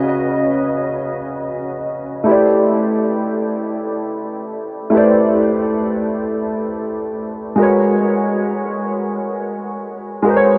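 R&B in a slow, straight 6/8 at 45 BPM, this yearning, sultry excerpt features a solo dark concert grand piano, mellow and up front with deep bass, treated with analog chorus and delay and soaked in a huge ambient reverb, as its extended chords drift from Db9sus4 to Am11 at 2.3 seconds and on to Abm11 at 7.6 seconds in a dreamy haze.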